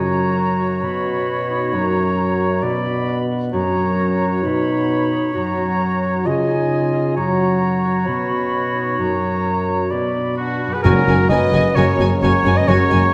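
Cinematic orchestral music in F# major at 132 BPM, heroic and adventurous, builds over harp arpeggios, sustained trombone chords and lines from an up-front oboe, mellow clarinet and pure, soft flutes. At 10.4 seconds a dark trumpet's stabs and a second violin line join, and at 10.8 seconds a lush arrival brings a distant violin melody, violas, woody cellos and double basses, background horns and brief timpani, all in a reverberant scoring-stage space.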